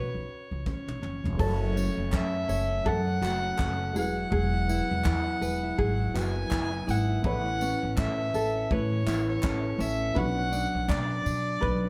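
A swung 82 BPM groove in 4/4 is carried by a soft brush drum kit with a fat snare and tight kick, opening with a fill at 0.7 seconds, while a pizzicato upright bass sits up front with a woody tone and a light fingerpicked ukulele picks along. In this easy-going, heartfelt acoustic pop excerpt, a dark, reedy violin with a nasal gut-string tone carries the melody, and at 1.4 seconds a twangy, compressed clean electric guitar joins with bright arpeggios over a worn, slightly detuned upright piano heard very quietly. A hollow group handclap enters in the background at 2.1 seconds as the chords move from F#m through Eadd9 and Aadd9 to Bmadd9, all set back in a wet studio reverb.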